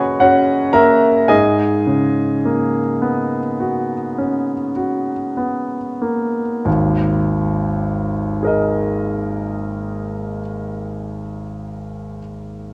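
Impressionist classical solo piano in G# minor, hazy and nocturnal, drifts in a rubato 9/8 at 35 BPM, slowing over its first 6.7 seconds as a clear, intimate concert grand with deep bass, long sustain and audible action noise moves from F#add9 through G#m11 to G#sus2, set up front in a moderate concert hall and colored by worn, warbling cassette tape with pitch drift across this short fragment of a longer piece.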